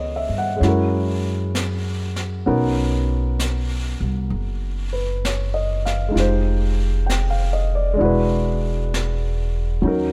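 This jazz ballad excerpt sets an intimate, wistful mood at a slow 65 BPM with a gentle swing, its harmony drifting from Dbm7 through Gb7, Bmaj9 and Fm9 to E9. A warm grand piano with short sustain carries the accompaniment up front, beside a woody, dark pizzicato upright bass. A natural-sounding brush kit of snare and hi-hat enters at 0.6 s, set lower in a close, dry room.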